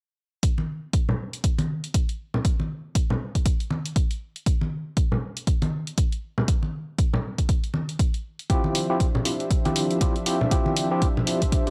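An overdriven tine electric piano, pushed through a combo amp with fast tremolo and tape echo, comes forward at 8.5 s with up-front stabs on a Dm11 chord. This short cut from a longer deep house track moves at 119 BPM in 4/4, with a 16th-note swing and a warm, smooth mood in D minor. Before that, from 0.4 s, a punchy analog-style electronic kick and a tape-toned electronic hi-hat hold the groove, joined at 0.6 s by up-front vintage congas in a band-limited, acoustic tone. Alongside the electric piano, a detuned sawtooth pad with a slow attack and chorus sustains chords under sidechain pumping, carrying on to the end at 11.7 s. The whole recording has a dry, gritty hardware and cassette character set in a digital ambience.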